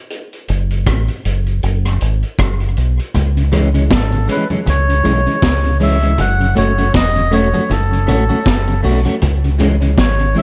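Dub reggae with a deep, spacious mood and a swung sixteenth-note feel, cut from a longer piece. A vintage drum kit opens a break at 0.1 seconds, its gritty, saturated sound carrying a high-tuned snare, tight kick, hi-hat and rim click under a rolled-off top. A dark, round, punchy fingered electric bass sits up front beneath it. From 3.1 seconds the band moves between C# minor and F# minor chords, adding very quiet, ringing congas, a mellow tonewheel organ in the background, shaded by chorus vibrato, slow rotary speaker and dub echo, and a clean, picked electric guitar treated with dub echo. A reedy, breathy melodica carries the melody from 3.9 seconds, its nasal tone trailing dub echo over a small room ambience.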